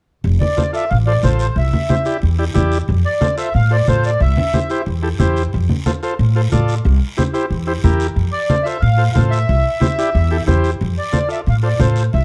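Festive and sunny, this dark-toned cumbia excerpt rides on woody, thumpy pizzicato upright bass up front, low-tuned congas struck with hard hands and a raspy guiro close and dry, while a buzzy vintage combo organ with spring reverb comps over simple F and C changes and a sweet, reedy accordion carries the melody from 0.4 s, drops out at 4.8 s and returns at 8.3 s.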